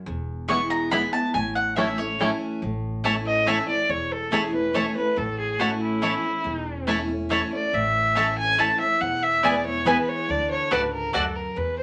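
Set in a wet small room, this short cut from a longer bluegrass piece in A major moves at a driving, joyful 141 BPM in 3/4, with a full-bodied jumbo acoustic guitar and a growly, thumpy pizzicato upright bass underneath, a twangy fingerpicked banjo up front carrying the melody only until 2.3 seconds, a round, double-strung mandolin soloing over the opening and adding stabs, and a dark, boxy bowed fiddle with light vibrato taking up the melody from 3.3 seconds.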